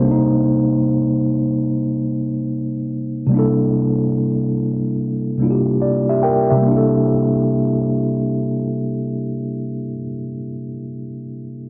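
Melancholic and hazy, this hip hop excerpt drifts at a slow 72 BPM in 4/4, with a 16th-note swing that gives it a lazy, loping feel. A mellow tine electric piano plays alone for the whole clip, ranging from C3 up to G5, its clean tone sitting up front as though heard through built-in speakers. The harmony moves from Cm7 to C13, and a filter sweep shapes the sound until 6.7 s, when the passage shifts into a new section. A low-pass filter softens the piano, and a moderate plate reverb with a long tail wraps it in a dusky glow. The production is dark and warm, leaving the track feeling like a faded late-night memory.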